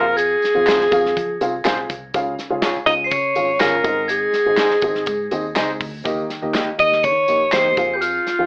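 Driving and urgent, this brief cut from a longer uptempo 1960s-style soul piece moves in a straight 4/4 over an Fm, Db, Ab, Eb progression that returns to Fm. A breathy alto saxophone carries the melody up front, with a subtone, soft attack and jazz-style vibrato. A glockenspiel struck with hard plastic mallets rings high above it as a metallic, bell-like second line, while a dark upright piano supplies mellow, woody accompaniment. An electric guitar through a small old amp adds slightly broken-up, lo-fi stabs with tube saturation until 7.7 s, and a vintage muted fingered electric bass sits low and quiet, round and punchy. From 0.2 s a warm soul drum kit with a tight kick and medium-tuned snare plays hi-hat, kick and snare, joined by close, dry tambourine and handclaps in the background, all in a moderate club reverb with an AM radio sound.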